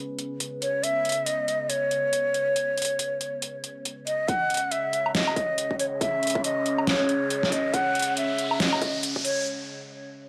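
Deep dubstep at 139 BPM in C# minor with a half-time, swung feel, brooding and cavernous, where a dark sawtooth pad with chorus and phaser holds sustained chords beneath a breathy, bright ney melody with vibrato and dub echo, up front alongside an overdriven kit of deep snare, metallic hats and woodblock, before a punchy overdriven kick enters at 4.3 seconds to start a build-up, an electronic riser enters at 5.8 seconds, and a break arrives at 9.5 seconds, all in a dry, gritty recording with light reverb.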